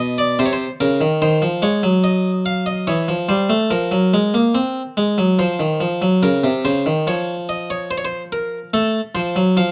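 This baroque-style classical two-part invention in triple time, cut from a longer piece, has a contemplative yet driving mood. A solo Flemish-style harpsichord on a single set of strings sits up front, its plucked tone bright and full, captured by close, detailed microphones with a light touch of reverb. A second section begins at 6.2 s and carries the line to a close at 9.7 s.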